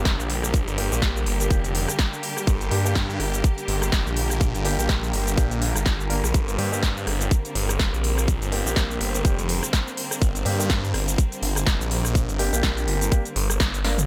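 Opening with clear, lush bowed strings holding sustained chords over a swirling, detuned saw bass that pumps under a phaser, this bouncy, swaggering bass house excerpt in G minor at 124 BPM with a 16th-note swing soon brings in a tight, up-front electronic kick and a punchy big-room kit of crisp hats, rim click, shaker, snare and toms, while gritty 12-bit grand piano stabs with delay arrive at 0.8 seconds, all in a dry mix that ends on a band accent at 13.6 seconds and a drum fill at 13.8 seconds.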